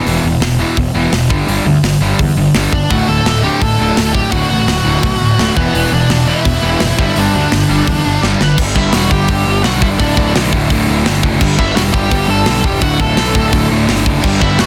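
A rebellious, upbeat punk rock excerpt at 169 BPM in D major, built on two riffing rhythm guitars set in the background, one a cranked stack and one crunchy and overdriven, over a growly, fuzz-laden picked bass and an up-front tight metal drum kit with bright cymbals and a medium-tuned snare. A smooth overdriven lead guitar carries the melody from 2.7 seconds, while a double-tracked high-gain guitar thickens the riff at a lower level before dropping out as a drum fill ends at 8.6 seconds. The sound is a dense, heavily limited modern master with light reverb.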